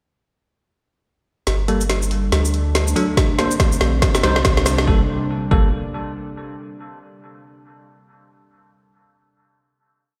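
At 141 BPM in 4/4, this deep dubstep piece moves with a half-time feel and swung 16ths, as a layered deep house kit of woody snare, dark closed and half-open hats and shaker builds through a drum fill from 1.5 to 4.9 seconds, sitting up front. A punchy electronic kick joins at 3.2 seconds, while a soft, round sub bass plays chopped phrases deep in the low register. Above them, a tense, string-like drone holds sustained chords with vibrato and its own reverb, and a filter sweep runs across it during the build. A bell-like tine electric piano adds sparse, clean chord stabs with subtle chorus and dub echo. The harmony moves in G minor from Gmadd9 through D5, Bbadd9 and Cm before settling on a final Gmadd9 chord at 4.9 seconds, and a stone-room reverb on the whole mix gives the dark piece a cavernous air.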